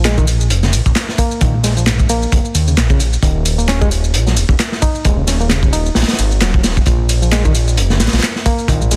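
Breakbeat in E-flat minor at 132 BPM with a swung sixteenth-note feel, raw and gritty, cut from a longer piece. Crunchy, saturated breakbeat drums with a tight kick and medium-tuned snare sit up front beside a fat, detuned analog bass with a moving notch, while a tape-warm analog drum machine adds handclaps, ride cymbal and shaker. A barky, reedy electric piano riff carries overdrive, twelve-bit sampler grit and tape echo over chords moving from Bb7 to Ebm7 at 3.2 seconds and Bb5 at 6.9 seconds, all in a small room under a dense, heavily limited modern master.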